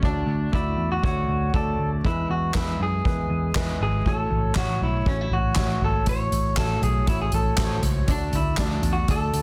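A straight, steady 4/4 pulse carries this short excerpt of piano-driven pop, and the mood is warm and hopeful. A soft-mallet drum kit sits up front in a big room, with a boomy kick, medium-tuned snare, hi-hat, toms and handclaps playing through the full 9.4 seconds. Beneath it, a vintage picked electric bass sounds dark and round, its foam-muted, amped tone holding the low end. An upright piano supplies the accompaniment with a woody, intimate character, and the action noise of its keys comes through. Over the top, a picked electric guitar carries the melody, compressed and slightly broken-up as it sits close to the front. The harmony moves from D to E to A6 and back to D, framed by light reverb and a dense, heavily limited modern master.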